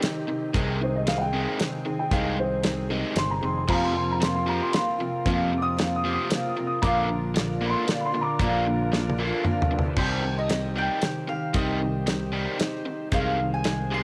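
A straight three-four lilt drives this wistful, reflective stretch of folk and heartland rock, cut from a longer piece and captured as a home cassette recording with light reverb and small room ambience. A dry, damped 70s drum kit sits up front with dark cymbals and a tight kick, while a growly, punchy electric bass, a picked, boxy ladder-braced acoustic guitar and a double-tracked overdriven electric guitar riff fill out the band beneath a very quiet, reedy tonewheel organ with key click and a slow rotary speaker. A dark, woody upright piano leads until 9.8 seconds, and after a drum fill a mellow, round mandolin carries the melody from 10.0 seconds.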